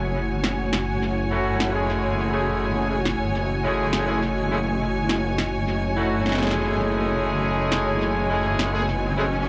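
Playful and swaggering, this glitch hop excerpt rides a single F#m7 chord, with a heavy, saturated wobble bass up front, a moody analog pad with chorus and ring modulation, and a distant, bowed chamber string section adding shadowy texture throughout. A cracking electronic snare with dub echo sits in the background from 0.4 seconds, and at 1.3 seconds a brilliant, punchy horn section enters with stabs coloured by vintage 12-bit sampler grit, a low-pass filter and dub echo. An electronic riser in the background arrives at 8.7 seconds, all set in an echo-heavy mix with a moderate echo chamber reverb.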